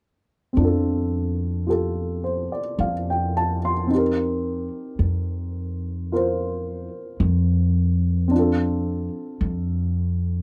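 A dry, close 1970s-style studio sound frames this intimate, tender jazz excerpt in a slow swing, where a dark, mellow baby grand piano with audible action noise and short sustain comps over Dm7 and F9sus4 chords while a woody, growly pizzicato upright bass sits up front on a thumpy F2.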